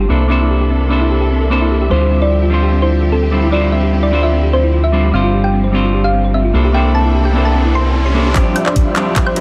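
Future bass in D minor at 149 BPM with a half-time feel, this short excerpt from a longer piece carries a bittersweet, emotional mood. From the start, a dark, clean semi-hollow guitar sits up front as accompaniment with digital delay, while distant, bowed symphonic strings hold lush sustained chords, and a fat sawtooth analog bass anchors the low end, all breathing with sidechain pumping. Two tine-like, FM thumb-piano-like synth plucks share the upper register: one plays gentle arpeggios, and the other enters at 1.9 seconds with a round, phased melody in the background, both with chorus and delay. The chords move from C13 through Dm11 and G7sus4, back to C13 and then on to Dm11, with a background riser building from 6.5 seconds. At 8.4 seconds a build-up arrives as huge, detuned supersaw chords sweep through a low-pass filter, a knocking electronic kick lands up front, and a tape-warm trap kit with bright hats, handclaps and woodblock plays a fill. 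The mix stays dry and close, with only small-room ambience on the drums.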